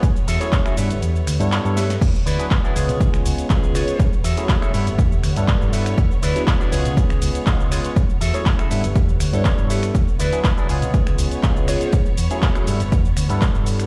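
The recording sounds like it is played on a big sound system in a bare room, with stone room reverb and digital ambience around this sunny, joyful slice of filtered disco house at 121 BPM in a straight 4/4. An overdriven, layered electronic kick sits up front, re-recorded in a large room. A punchy analog drum machine adds snare, handclaps, finger snaps, hi-hat, shaker and crash cymbal, with sidechain pumping on its hats, percussion and cymbals. A round, dark hollow-body bass carries the low end. A barky tine electric piano with phaser plays accompaniment alongside a twangy, picked guitar riff shaped by an envelope filter. In the background, a fat, nasal analog synth brass melody with chorus and tape echo enters at 0.4 seconds alongside the piano, while a lush, distant violin section holds sustained chords tinged with vintage 12-bit sampler grit. The bass, piano, guitar, brass and violins all pump with the sidechain. 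The kick drops out briefly at 1.0 seconds around a drum fill, the harmony cycles through F#m9, G69, E7 and C#7, and the guitar and brass stop at 11.9 seconds.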